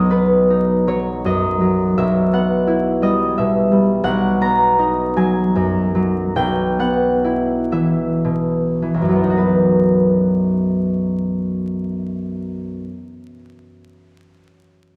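This classical solo harp piece, cut from a longer work, has a dreamy, peaceful mood. It moves in a rubato 6/8 at roughly 33-58 BPM counted in dotted quarters, in B major, and it slows down from 3.0 to 9.4 seconds. The concert harp sits up front with a warm, ringing, fingerpicked tone, spanning B1 to A#5 until it stops at 13.1 seconds. Its harmony rocks between B and Em/B before settling back on B at 9.4 seconds, where a new section begins. A wet recital hall reverb suggests a church or concert hall, and a layer of vinyl crackle lends a faintly aged patina.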